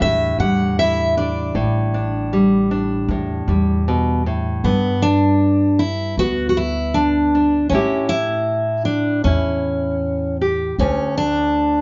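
A straight, unhurried 4/4 pulse carries this pastoral, nostalgic slice of acoustic folk for a small band, cut from a longer piece. Up front, a picked steel-string dreadnought guitar sings the melody with a warm tone, while a fingerpicked nylon-string guitar sits just as close in accompaniment with a deep, dark classical voice. Beneath them, a pizzicato upright bass adds a woody, growly, thumpy low end. All three play throughout, opening on a suspended A7sus4 and moving into a new passage at 4.6 seconds that passes through G and A7 before arriving on a bare D5 at 10.8 seconds. The band sounds live in one room, set in a moderate large-studio reverb, with a rounded, mellow top end.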